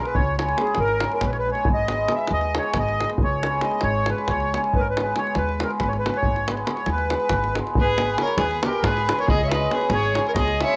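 Fiery and restless, this short excerpt of Balkan wedding-band folk drives along at 276 BPM in 7/8 in G# minor, with a reedy, sweet accordion melody up front over shimmering hammered cimbalom, a deep davul and woody pizzicato upright bass, cycling between C#m and G#m, until a biting, intense bowed violin joins as a second line at 7.8 seconds, all carrying a cassette-tape home-recording character and spring reverb in a small room.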